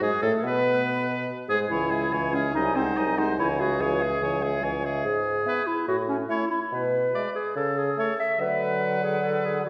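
The full wind quintet opens together in a quick, cheerful and graceful classical-period movement at 143 BPM in straight 4/4, moving through minor-key harmony before settling into A major from 5.0 s, cut from a longer piece. A hollow flute carries the melody from the background while a bright, present oboe sings the second line, a mellow clarinet and a clear, soft-attacked French horn fill in the accompaniment, and a bassoon with vibrato anchors the bass up front. The ensemble sits in a church or concert hall with a wet reverb that rings for about 1.6 seconds.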